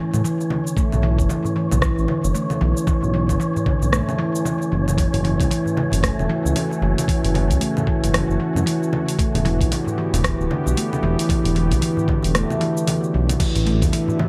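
Organic downtempo with a hypnotic, meditative mood, built on ringing, mellow handpan arpeggios played with soft fingertips and touched by digital delay, over a smooth sawtooth synth bass, a gritty, thumpy electronic kick, a dark-hatted deep house kit of cabasa, congas, crash, hi-hat and rim click, and a very quiet, close and dry clay darbuka, while a breathy, wind-like tuned noise texture hovers until 13.4 seconds and a warbling, detuned vintage analog pad with chorus and sidechain pumping enters at 5.0 seconds.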